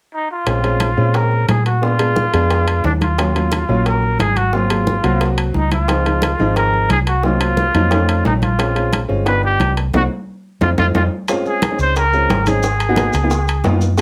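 A moderately reverberant studio sound frames this short cut from a longer Afro-Cuban jazz piece, sultry yet fiery, in a straight 4/4. A breathy, whispered trumpet sits up front with the melody from the very start, its soft attack, scooped notes and vibrato giving it a vintage, intimate jazz character. A woody, boxy upright piano with short sustain supplies the chords, while a dark, round hollow-body electric bass, fingered and amped, stands forward beneath it. Behind them, tight high-tuned bongos and bright, thin-skinned congas stay in the background, and ringing metal-shell timbales sound close and dry, with drum fills at 5.2 and 10.8 seconds and a band accent from 9.9 to 11.3 seconds. Grainy maracas join at 11.3 seconds as the harmony moves from rich minor ninth and altered dominant chords into a new passage that closes the cut.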